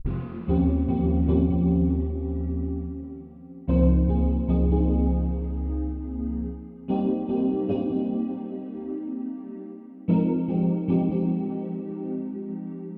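An FM electric piano layered with a soft pad plays alone from the start, its lush, mellow tone carrying tremolo, ensemble chorus and analog delay as it moves through Eb13, Dbmaj13, Cm7 and Fm9 in this melancholic, hazy vaporwave excerpt. Gently swung and up front, the keys sound muffled as though heard through a wall, set in a huge stone-room reverb and coloured by cassette tape and a tape stop. The excerpt closes at 13.0 seconds.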